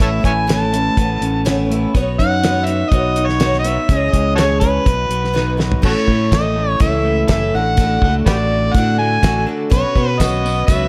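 Lightly reverberant studio sound frames this nostalgic, open-road folk and heartland rock excerpt at 123 BPM, where a gritty, overdriven harmonica up front carries the melody with vibrato, scooped notes and tongue slaps over a woody, shimmering twelve-string acoustic guitar, a slightly broken-up electric guitar riff, fingered electric bass and a dry, damped 70s drum kit with a fat snare that plays a fill at 5.4 seconds, before a very quiet, bowed chamber string section and a jingly tambourine join at 9.7 seconds.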